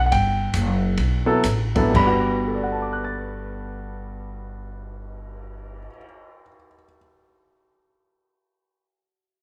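A natural-sounding, up-front baby grand piano carries the melody in this relaxed jazz piano trio excerpt, swinging in 4/4 around 115-150 BPM in G major and opening on a Gmaj7 chord with a slowing feel through the first 1.9 seconds. A woody pizzicato upright bass with steel strings sits up front, and a dark, smooth acoustic drum kit adds a boomy kick, hi-hat, ride, crash and a cymbal swell, all set in a large studio reverb. The bass and drums drop out around 6 seconds, and the piano rings on alone until 7.0 seconds.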